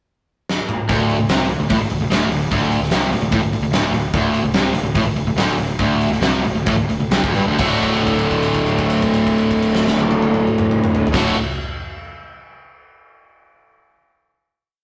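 Classic rock in D mixolydian at 125-148 BPM, confident and driving, where a huge arena drum kit with bright cymbals, a fat snare and punchy kick kicks off with a fill at 0.5 seconds before an up-front distorted electric guitar and a hollow-bodied overdriven semi-hollow guitar in the background play a single-note riff over a round, fuzzy fingered bass doubling it in eighth notes, the riff slowing from 4.1 seconds into a held final D chord at 7.6 seconds, all captured as a rough rehearsal-room recording with tube saturation in a moderate stone room.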